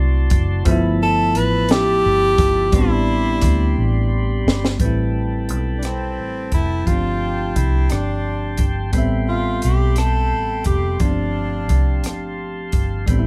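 A close, live-in-one-room sound with moderate ambience frames this late-night, sultry slow six-eight R&B excerpt, where a punchy, close-miked tenor saxophone carries the melody from 1.0 s over bell-like tine electric piano, a clear tonewheel organ on slow rotary speaker holding sustained chords, a dark, foam-muted fingered electric bass, and a dry compact cocktail drum kit with a high-tuned snare that plays a fill from 3.8 s into the second section at 4.8 s.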